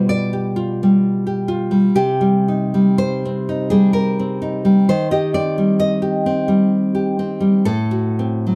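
In a rubato 3/4 that drifts between 54 and 67 BPM, this melancholic, wistful romantic piece for solo classical guitar unfolds in C minor, cut from a longer work and tuned to A4 = 442 Hz. The fingerpicked nylon-string guitar sits up front with a full-bodied, deep classical tone, ranging from A2 to Eb5 through a short passage that moves from G7/B to Cm at 1.9 seconds, Cm/Eb at 4.9 seconds, and a rootless D7/A at 7.7 seconds. A wet studio reverb lends the instrument a gentle bloom around its acoustic sound.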